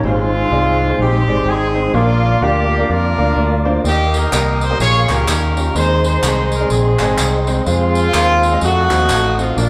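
Soulful and hopeful, this short excerpt of uptempo gospel moves with a swung 4/4 lilt as the band plays together in one large, reverberant room. A woody upright piano with audible action noise and long sustain carries the accompaniment, while a soft, flute-like tonewheel organ holds sustained chords in the background through a fast rotary speaker and chorus vibrato, its key click audible. Up front, a round, dark fingered electric bass anchors the low end beside a clear horn section with a smooth top, playing the melody in an ensemble jazz style from 0.1 seconds. At 3.9 seconds, egg shaker and group handclaps join in, their band-limited, vintage sound adding lift to the groove. The harmony travels from Ab through Bb and Eb to a Bbm7 and Eb9, returns home to Ab, then leans toward Fm and closes on a tense F7b9.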